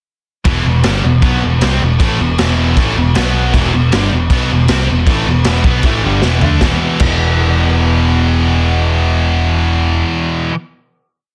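Hard rock with a heavy, driving mood, set in a straight 4/4 feel and built on a power-chord riff that runs from 0.5 seconds and ends on a held final chord at 6.6 seconds. A dark, round picked electric bass sits up front, driving eighth notes and doubling the guitar riff until 10.0 seconds. The raw garage drum kit plays a big rock groove in a small, pumping room, with a punchy kick, a medium-tuned snare, toms and dark crash cymbals, its sound saturated, gritty and rolled-off on top. A drum fill leads into the final chord, after which the kit stops at 7.1 seconds. Three guitars share the riff: a bright, tight distorted part, a warm overdriven part further back, and a scooped, high-gain, double-tracked part also in the background. The mix is dry, dense and heavily limited, with a modern master.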